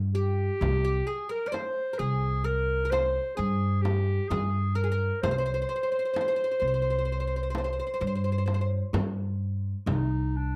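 An upright bass opens the recording, plucked pizzicato with a dark, woody tone on steel strings and sitting up front in the mix. Almost at once, at 0.1 seconds, a solo clarinet takes the melody in a classical style, its tone warm yet distant and roomy. A bright, fretless oud carries a second line with plectrum-plucked double strings until 8.7 seconds, and a frame drum played with hard hands adds a warm live-room pulse. This hypnotic, soulful Turkish makam ensemble piece moves at 130 BPM in 10/8 with a straight feel, tuned to A4 = 438 Hz. Light reverb and a rough home-demo mix give this short cut from a longer piece an intimate, unpolished character.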